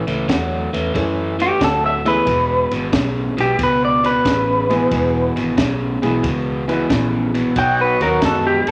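A rollicking, soulful electric blues shuffle swings along as a bright, overdriven guitar riff, a woody upright piano, a round foam-muted bass and a compact cocktail kit with a punchy kick and high-tuned snare set the groove, before a slightly broken-up, lo-fi lead guitar through a small old amp takes the melody up front at 1.4 seconds and a clear saxophone section with light vibrato adds brief stabs at 7.6 seconds, all in a large studio reverb in this short cut from a longer piece.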